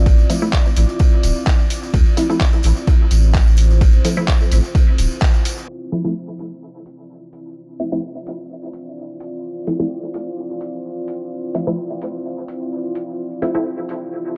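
A round, soft sub bass with sidechain pumping sits up front beside a punchy, layered kick in this deep, cavernous dub techno passage, and both drop out by 5.3 seconds, with a jingly acoustic tambourine falling away at 5.7 seconds. A muted, resonant chord stab with phaser, dub echo and pumping plucks through a filter sweep, while a moody, dark pad of detuned sawtooth voices holds a Dm9 chord under chorus, reverb and pumping. A muffled, pitched-down sampler kit of handclaps, hi-hat and ride cymbal, also fed through dub echo, keeps a light swing going in a dry, gritty, low-passed mix.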